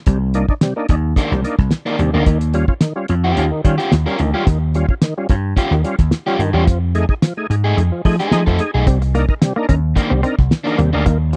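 Up-front vintage slap bass, round and punchy, drives this strutting, playful funk clip alongside a dry, cloth-damped drum kit with a fat snare and tight kick, while a gritty overdriven tonewheel organ stabs through chorus vibrato and slow rotary speaker, a crunchy overdriven guitar with spring reverb accompanies from 1.2 seconds, and a clean, compressed semi-hollow guitar adds a hollow-body riff from 8.9 seconds over Cm9, Eb9 and F7#9 chords in a close 1970s-style studio sound.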